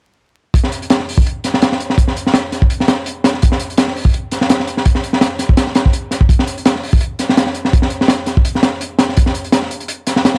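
A crunchy breakbeat drum kit drives this raw, atmospheric drum and bass excerpt at 167 BPM in 4/4, with a slight 16th-note swing, its hi-hat, punchy kick and high-tuned snare sounding acoustic, saturated and gritty from 0.5 to 10.4 seconds. Sitting up front in a small room with a rolled-off top and light reverb, the kit comes across dark and smooth, while vinyl crackle adds to the dark, warm production.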